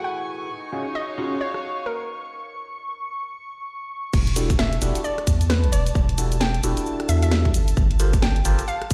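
Bouncy and moody, this short cut of two-step UK garage moves at 132 BPM in 4/4 with a 60% swing on the sixteenths, passing through minor eleventh chords from D#m11 to Em11 and Gm11. A hollow, detuned square-wave pluck carries the melody throughout, its mellow chorus tones trailed by tape echo, while an ethereal, airy pad holds sustained chords high above, breathing with sidechain pumping and its own built-in reverb. A barky, overdriven tine electric piano adds gritty stabs through a phaser and tape echo, and a reedy, period-style string section with gut-string tone supplies texture until 2.3 seconds. The garage drum kit enters at 1.5 seconds with a cracking snare, rim clicks, hi-hat, cabasa and crash, and after a short break the drop lands at 4.1 seconds with a tight, up-front electronic kick and a deep, thick saturated sub bass. The whole mix carries a light digital ambience and the stony reverb of a bare room heard over a big sound system.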